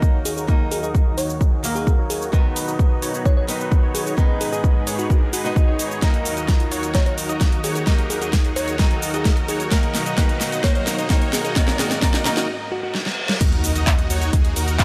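A punchy, up-front electronic kick drives a straight 4/4 at 130 BPM in Eb minor, with a huge snare, metallic hats, handclaps, shaker and crash cymbal. This powerful, emotional festival progressive house build-up, cut from a longer piece, layers a boxy fingerpicked acoustic archtop guitar with dub echo, a lush chorused unison pad in the background, and a thick detuned supersaw riff whose low-pass filter sweeps under sidechain pumping. A sparkling bell-like FM electric piano melody floats behind them, while very quiet risers build toward a break at 12.5 seconds, where a reverse cymbal fills the gap. At 13.4 seconds the drop lands with an impact and a deep, saturated sub bass on Eb2.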